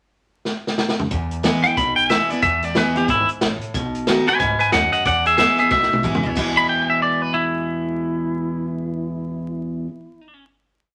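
A swung shuffle groove from a vintage drum kit with a punchy kick opens this upbeat, retro rockabilly piece with a fill in the pickup bar. A woody, thumpy pizzicato upright bass then plays two-beat root-and-fifth lines with walk-ups, while a full-bodied picked steel-string acoustic guitar alternates bass notes and strums with bass runs. Up front, a twangy, compressed clean electric guitar carries a lick-based theme that returns, set in a wet studio reverb under vinyl crackle, with the drums stopping at 6.5 s as the other parts ring out on a final chord.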